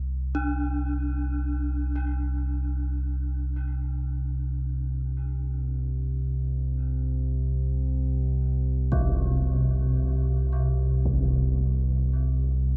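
In free time, this short piece of dark ambient drone, cut from a longer work, unfolds over a Csus2 harmony with a cavernous, dark mood and a tuning slightly below standard pitch. A deep, rumbling drone sits up front, its triangle and sawtooth tones swelling in through a slow attack, sustaining and trailing off with a long release into its own built-in reverb. Above it, a gamelan-type bronze metallophone plays arpeggios in a lower-middle register, its metallic, ringing strokes from a horn mallet carrying the shimmering beats of paired tuning and a tape echo, fading out across the full 12.8 seconds. A huge, bright impact, low-pass filtered and set in the background, lands at 8.9 seconds and rings until 11.3 seconds. Studio reverb gives the whole a dark, warm production.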